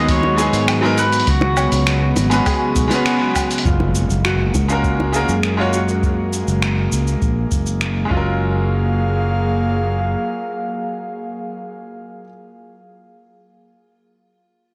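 Sunset chillout with a blissful, smooth mood, this excerpt moves in a straight 4/4 over G#m7 and C#7sus4 before settling on F#maj9. A twangy pedal steel guitar with tape echo carries the melody for only the opening 3.0 seconds, its slide and volume swells floating over a brilliant grand piano accompaniment and a breathy, detuned pad thickened by chorus. A mellow concert harp plays arpeggios in the background, touched with vintage 12-bit sampler grit and tape echo, while a growly, up-front fretless electric bass with tube saturation anchors the low end. The beat comes from a dusty, sampler-style kit of cabasa, finger snaps, hi-hat and woodblock, with soft clipping on the snare, joined by a deep, dry analog electronic kick and round, low-tuned bongos played with soft hands. A band accent lands shortly before an electronic impact sits in the background from 3.7 to 6.0 seconds. The whole mix has a blown-out, overdriven character under light reverb.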